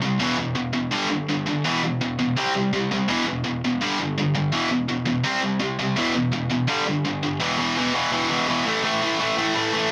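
Driving straight 4/4 at 166 BPM in E minor, this raw, angry punk fragment, cut from a longer piece, features a lone tight, bright, double-tracked electric guitar picked up front with distortion in light reverb, cycling power chords on E, G and C before shifting at 7.4 seconds to a closing move from E to A, all in a dense, heavily limited modern master.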